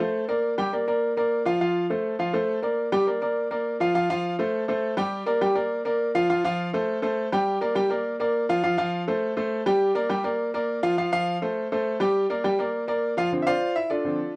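Latin piano excerpt, danceable and driving, in which a bright, woody upright piano plays alone with long sustain, sitting up front in a moderate studio reverb as it moves between Gm and Fadd9 harmonies before closing on a Dm7 at 13.3 seconds.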